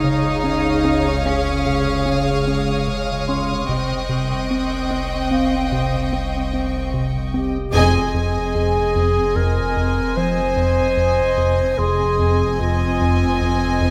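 A rubbery, hollow square-wave bass riff stands out in this uneasy, mysterious excerpt of cinematic suspense scoring, moving at 74 BPM in 5/4 in F minor over chords of Dbadd9/F and Cm. Around it, symphonic strings play sul tasto with a soft, floating attack: violins carry the melody with a second violin line beneath, a dark, woody viola section with vibrato sits in the background as accompaniment, and cellos and double basses hold the low end alongside a deep, punchy sub bass drone on F1. High above, a dark, intimate studio violin section and a bell-like, delicate celesta add texture. At 7.3 seconds a mellow, smooth-topped clarinet enters with a classical-style second line, just before the ensemble lands an accent from 7.7 to 8.6 seconds as the music moves into a new section. The whole excerpt sits in a moderate scoring stage reverb.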